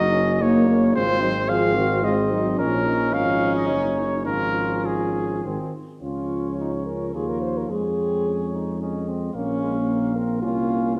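In a rubato 3/4 at 109 BPM, this noble, triumphant classical brass quintet excerpt in D-flat major plays across its full 11 seconds, shifting into a new section at 6.0 seconds. Two dark trumpets with light vibrato lead: one carries the melody up front while the other, softer in attack, plays a lower second line. A clear French horn sounds distant and roomy, a soft-edged euphonium sits in the background, and a mellow tuba anchors the bass up front with a smooth top, all set in a wet recital-hall reverb with a warm production.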